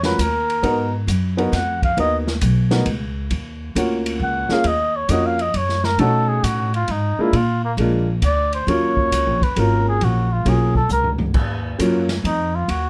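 Late-night and moody, this short 3/4 swing-and-bop jazz excerpt in Eb minor moves at 134 BPM, with a veiled, breathy cup-muted trumpet carrying the melody up front with light vibrato, pausing at 2.2 seconds and returning at 4.2 seconds. A woody, slightly detuned vintage upright piano with long sustain comps beneath it, a growly pizzicato upright bass sits close, and a dark, smooth open drum kit with a boomy kick adds a fill at 10.9 seconds, all within light reverb over chords moving from Ebm7 and Abm7 through B7 and Bb7.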